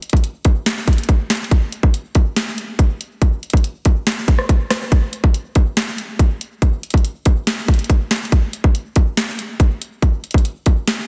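A half-time feel in 4/4 drives this hip hop excerpt at 141 BPM, giving the beat a slow, heavy stride over a faster pulse. The only part is an electronic trap drum kit, playing from the start through 11.0 seconds, built from hi-hat, kick drum, rim click and snare drum. Its hard-clipped kick and sharp snare sit up front, while bright hats glitter on top, and the kit carries a small-room character from being re-recorded. The mood leans eerie and melancholic, a cold, uneasy tone set entirely by the drums. A light reverb surrounds the sound, and the dense, heavily limited modern master keeps it punchy and compact as the same section repeats from 8.3 seconds.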